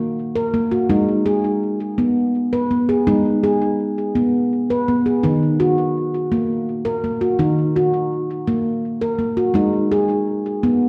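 In a straight 6/8 at 56 BPM counted in dotted quarters, this gentle, hypnotic piece of meditative world music, cut from a longer work, is a solo handpan in Eb minor tuned to A4 = 435 Hz that rings mellow and up front from 0.0 to 10.9 s across Eb3 to Cb5, its nitrided-steel tone struck with soft fingertips and trailed by delay, as the harmony rocks between Ebm and Abm inside a dark production with a wet echo-chamber reverb of 1.4 s and small-room ambience.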